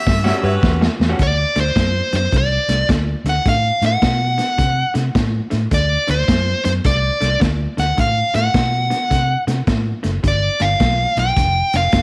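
An electric blues shuffle at 106 BPM in D mixolydian, soulful and laid-back, cut from a longer piece. It opens with a brief harmonica solo with tape echo, vibrato, tongue slaps and scooped notes over a drum fill, with a tight saxophone section stabbing at 0.4 seconds, while the round, punchy fingered bass, the crunchy, gritty breakbeat kit with its tight kick, and a slightly broken-up, lo-fi guitar riff tucked in the background carry the groove. From 1.2 seconds a dark, overdriven lead guitar takes the melody up front as the harmony moves from D6 to G6 at 10.2 seconds, all in a moderate echo-chamber reverb.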